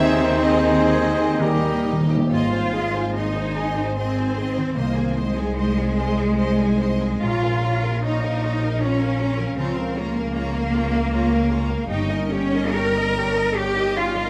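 A wet recital-hall reverb surrounds this warm, lyrical fragment of a slow romantic orchestral movement in Ab major and 3/4, moving with rubato at 60-81 BPM. For the first 2.0 seconds, a mellow, hollow flute, a present clarinet, a distant oboe, a bassoon, a barely audible dark French horn section, a very quiet trombone section and clear trumpet stabs fill out the texture, and soft-mallet timpani add a round fill from 1.4 seconds. Throughout, a rich violin section carries the melody with vibrato over a smooth second violin line, lush viola accompaniment and ringing fingerpicked harp arpeggios, while a bright cello section and a focused double bass section sit up front in the bass.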